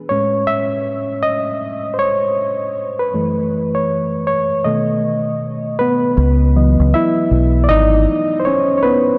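Hazy and nostalgic, this short lo-fi hip hop excerpt from a longer piece moves at 79 BPM in 4/4 with a 64% swing on the sixteenths, in C# minor and tuned slightly flat to A4 = 438 Hz. A barky, reedy electric piano carries the whole 9.2 seconds on its own at first, sitting up front with a bright, clean tone through built-in speakers, softened by cassette tape and a low-pass filter as it ranges from F#2 to E5. The chords move from Amaj7#11 through F#m7 and B7 before settling on C#m11 at 6.2 seconds. At that point a deep dub fingered electric bass enters, dark, round and punchy, placed up front between G#1 and C#2 until 8.1 seconds. The mix is soaked in a huge ambient reverb with a long 4.8-second tail and a cassette-tape haze, giving the brief passage a dreamy quality.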